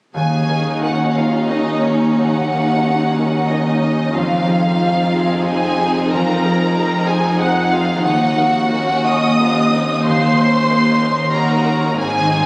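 Captured on a phone in the room and compressed, this moving, longing cinematic film-score passage is drenched in wet concert hall reverb with a club-like ambience, cut from a longer piece and drifting in a rubato 3/4 around 92 BPM in Eb dorian. A brilliant concert grand piano enters at 0.1 s with deep bass and long sustain. From 0.2 s a clear, intense symphonic violin section carries the lush vibrato melody up front over a focused second violin line, rich, even violas, a ringing fingerpicked harp in arpeggios, smooth cellos and a very quiet chamber double bass section, all moving through Ebm7, Fm7 and back to Ebm7.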